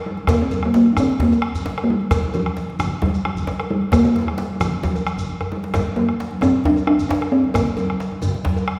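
West African traditional drum ensemble music, festive and earthy, moves at 132 BPM in 4/4 with a light swing on the sixteenths, centered on a Bb major pentatonic scale. A resonant talking drum sits up front and carries the melody from the very start, ranging from F3 to D4 in a small-room sound. Within a fraction of a second the round, close and dry bombo joins, along with bright, thin-skinned congas played with soft hands at a distance, a medium-tuned djembe set back in the background, a metallic cowbell, and a grainy, mellow shekere heard far off in a large room. A drum fill breaks in at 5.3 seconds, and the ensemble plays on until the bombo's last note at 8.8 seconds. The whole short passage, cut from a longer piece, is bathed in a lush, reverberant hall ambience.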